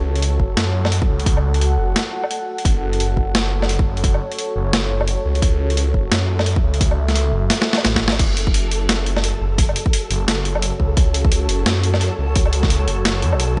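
A swung half-time drum and bass groove at 173 BPM in F# minor drives this dark, spacious drop, where a hard-clipped electronic kick and a gritty, compressed sampler-style kit with a high-tuned snare, hi-hat, crash and woodblock sit up front in a large-room sound over a swirling, thick detuned saw bass with phaser and a deep, moody pad bearing chorus, reverb, 12-bit sampler grit and sidechain pumping, with a drum fill at 7.5 seconds before a flickering, grainy texture drifts in at 8.4 seconds in the background.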